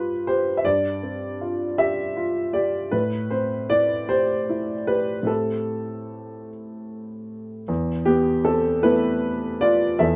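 A slow, rubato 6/8 pulse at 52 dotted-quarter beats per minute carries this short, intimate fragment of neoclassical minimalist piano in A minor, cut from a longer piece. A lone baby grand, dark, mellow and worn, with audible action noise and a boxy, up-front presence under light reverb, spans E2 to E5 as it moves from G7sus4 to Am7 at 2.9 seconds. A new section opens at 7.7 seconds on Esus4, keeping the melancholic mood.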